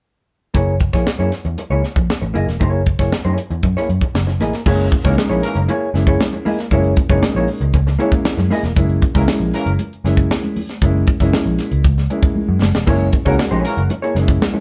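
An up-front, tight funk drum kit with a high-tuned snare drives this gritty, energetic funk cut at 117 BPM in F# mixolydian, joined by a dark, round, foam-muted picked bass and a clean, compressed hollow-body jazz guitar accompanying on an opening F#9 chord. At 4.7 seconds a boxy, woody upright piano adds stabs alongside very quiet, bright congas, while a mellow, distant horn section with vibrato and octave doubling punches in with short second-line figures, the first at 5.0 seconds. A drum fill at 12.4 seconds marks the closing stretch of this portion of a longer piece, heard as a band playing live in one room with moderate reverb.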